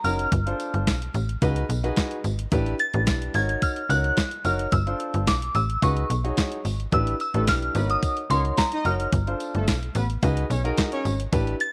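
Bathed in light digital reverb, this funky, slick stretch of early-eighties boogie funk sets a soft, pure FM bell melody with chorus and slapback echo over a deep, open concert grand piano, a snappy, metallic slap-like FM bass and a crisp 8-bit drum machine of thumpy kick, snare, hi-hat and handclaps, with a jingly tambourine in the background and fat, detuned analog synth brass joining at 7.3 s over a cycle of suspended ninth chords.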